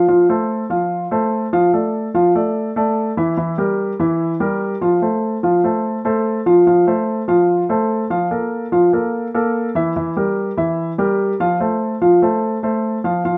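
Latin solo piano in a relaxed, danceable 146 BPM 4/4, where a dark, mellow baby grand with long sustain sits up front in moderate studio reverb and moves through F, Dm, Edim and Bb5 chords across this 13.4-second fragment cut from a longer piece.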